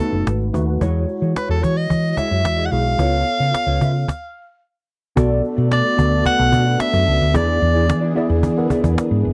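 Dry and close in a 1970s studio manner, this nocturnal, urban slice of polished 1980s jazz-funk pop moves at 110 BPM, with a breathy, edgy soprano saxophone carrying the melody up front with vibrato and slapback echo over a worn, slightly out-of-tune tine electric piano with ensemble chorus, a dark, fingered electric guitar riff sitting in the background with chorus, a round hollow-body bass placed up front, and a snappy cajon played with soft hands, until the band stops at 4.1 seconds and a thick, detuned sawtooth pad with chorus and tremolo enters with a slow attack at 5.2 seconds as the harmony turns to Bm7.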